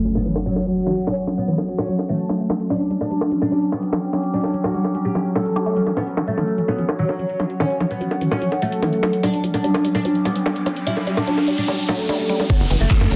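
A bright, plectrum-plucked fretless oud leads this intense, psychedelic trance passage in F# phrygian at 147 BPM, riding over a woody wave-folded pluck riff with delay, a pulsing gated texture of sustained chords, a warbly, lo-fi tape-like pad with phaser in the background, and a filter-swept drum and bass kit of bongos, handclaps and overdriven hi-hat; an impact opens the excerpt, riser and downlifter effects surface from 10.2 s, and an overdriven, knocking kick and a tight, punchy sawtooth sequencer bass arrive only at 12.5 s and 12.6 s within a dense, heavily limited mix.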